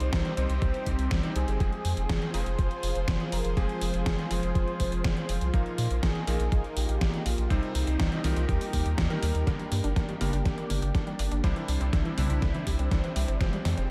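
A deep, round analog bass sits up front in this melodramatic, bittersweet italo disco excerpt at 122 BPM in F dorian, joined by a gritty, thumpy electronic kick, an overdriven 80s drum machine with gated reverb on its snare, a phaser-swept lush pad, clangy stabs from a bright electric grand piano, and a nasal, detuned unison lead carrying the melody until 9.2 seconds, after which a warbling filter-pluck arpeggio enters in the background at 9.5 seconds beneath a drum fill as the chords move from Gm toward Fmadd9.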